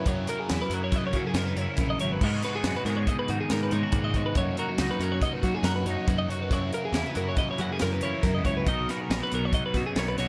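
A crisp fusion drum kit sits up front, its high-tuned snare, tight kick, hi-hat and crash cymbal heard in a small, pumping room, driving this bright, playful math rock and midwest emo excerpt in 5/4. Two twangy, compressed twelve-string electric guitars ring out clean, one playing accompaniment through an analog chorus and the other picking high arpeggios, while a double-tracked overdriven guitar with phaser carries a crunchy riff over a direct, modern picked bass. Chords such as F#9, G#m9 and Bmaj9 colour the dry mix.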